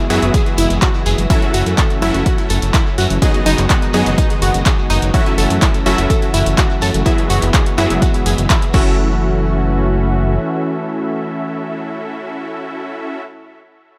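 Driving and bittersweet, this progressive house excerpt opens in the middle of a drop, with a punchy, overdriven electronic kick up front, a layered deep house kit of handclaps, hi-hat and crash, and a fat, thick sawtooth bass that also sits up front, all the synths pumping against the kick. Bright, airy supersaw stabs and a round, wave-folded analog pluck arpeggio sit over a smooth, chorused pad holding sustained chords that move between F#m7, G#m7/F# and Eadd9/F#, while a grainy, distant shekere adds texture in the background. The drums drop out at 8.8 seconds and the pluck at 9.2 seconds, and once the bass falls away at 10.4 seconds, the pad and stabs carry the closing passage.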